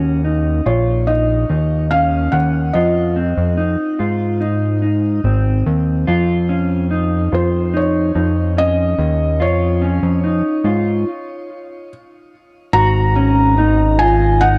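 Dream pop at 72 BPM in 4/4 with a straight feel, this ethereal, haunting excerpt sits in Eb dorian and unfolds in a dark, intimate haze. A mellow electric guitar plays clean, fingered arpeggios up front from the start, its dark tone coated in subtle chorus, shimmer reverb and delay. Underneath, a fat analog bass with a thick, detuned, saturated sawtooth and square-wave character sits up front, its fast-attack filter pluck giving way to sustained notes. At 0.7 seconds a felt-muted upright piano enters with a soft, mellow melody in a higher register, trailed by its own shimmer reverb and delay. The harmony moves from Eb7(no3) through Fm7 to Eb9sus4, then the music stops from 11.1 to 12.7 seconds before a new section opens on Ab7(no3). A moderate plate reverb with a 2.5-second tail gives the production its dark, warm depth.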